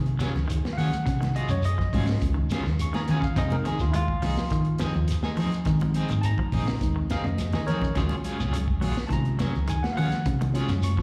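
An electric guitar at the edge of break-up opens with twangy, picked arpeggios carrying slapback echo, over a round, punchy hollow-body bass, launching a driving, hypnotic afrobeat groove at 104 BPM in Eb dorian that moves between Ebm11 and Fm7. A gritty, saturated breakbeat kit with a tight kick joins, alongside quiet congas, a grainy shekere and a second guitar adding slapback-echoed, tremolo stabs. From 0.7 seconds a barky, lightly overdriven tine electric piano with subtle chorus takes the solo spotlight, and a drum fill at 7.3 seconds leads back to Ebm11, all heard as a live club performance through the venue's PA.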